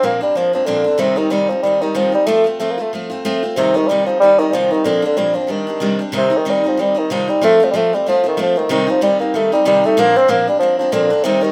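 A rough home-demo mix with a wet studio reverb gives this short passage, cut from a longer piece, a close yet roomy sound. It is a dark, spirited Celtic folk tune in C dorian, moving briskly at 187 BPM in 4/4 with a swung eighth-note feel, tuned slightly sharp to A4 = 444 Hz. A mellow, vintage-sounding bassoon carries the melody up front in a classical style, ranging from C3 to C4. Alongside it, a bright picked steel-string acoustic guitar plays the accompaniment, also up front, with audible finger squeaks. The harmony circles through Bbadd9, Cm and F, and the same section begins again at 6.1 s and runs to 11.5 s.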